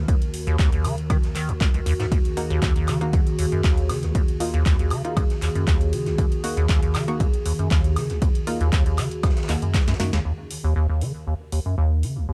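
Trippy and driving, this acid house cut from a longer piece sits on a single E-flat minor chord in a straight four-four pulse. A squelchy, resonant acid bass carries the riff up front, its square-wave tone chorused and moving under a filter sweep, while a punchy, overdriven electronic kick hits hard beneath it. A booming analog drum machine adds crisp snare, handclaps, metallic hats and woodblock with overdrive and a short room sound, and a swinging big-band kit with ride cymbal and snare sits far in the background, its cymbals pumping. From about 2.4 seconds a muted, deep dub chord stab enters with a mellow filter pluck, subtle chorus and analog delay. A warbling, nostalgic tape-like pad holds detuned, wave-folded chords throughout, pumping against the kick, and after a drum fill and a band accent near 10.1 seconds, it takes a filter sweep of its own. The whole recording is dry and gritty, with a cassette-tape character.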